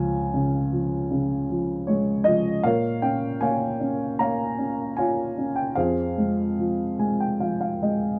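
A dark upright piano carries this short classical fragment alone, its woody, mellow tone sitting up front with a slightly detuned, natural character. The mood is reflective and shadowed, and the playing moves with a lyrical rubato in 4/4. Across its 8.2 seconds, the harmony passes from Db to Bb minor at 2.6 seconds and on to F minor at 5.8 seconds, with notes reaching from Db2 up to Bb5. The piano's long sustain lets each chord linger, and a short fill from 6.6 seconds closes the passage before it breaks off, cut from a longer piece. Light reverb and a dark, warm production wrap the instrument.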